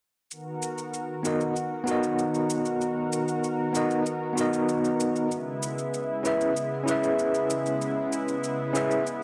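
A straight 4/4 pulse at 96 BPM comes from an electronic, layered shaker with a tape-warm sheen, setting up a sunny sunset chillout groove in B major, tuned to A4 = 436 Hz. Alongside it from 0.3 s, a lush, thick unison pad of detuned sawtooth and square waves, with an airy noise layer and a soft attack, holds sustained chords treated with chorus. At 1.2 s an overdriven tine electric piano enters as accompaniment, bright, barky and gritty through a combo amp, sitting up front and shaped by fast tremolo, a low-pass filter and tape echo. The harmony moves from Bmaj7 to E6 at 5.3 s. A wet plate reverb with a 2.0-second decay and a digital ambience surround the parts, and the passage is cut from a longer piece.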